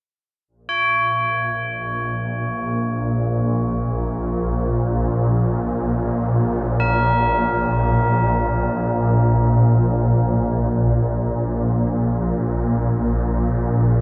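Haunting and meditative, this free-time piece of world meditation music sits in Bb minor, tuned to A4 = 443 Hz, and is cut from a longer work. Tubular bells appear first at 0.7 s, ringing in a narrow high band with a solemn, metallic brightness that suggests a plastic hammer striking the tubes. At 1.0 s a swarming drone rises beneath them in the low register, a tense, evolving mass of detuned sine tones in unison with a slow attack, long sustain and granular grain. The drone sits up front, with its own built-in reverb, while the bells stay further back in the mix. A wet cathedral reverb with a long 4.5 s tail surrounds the whole recording, and the production leans dark, giving the piece a cavernous, devotional stillness.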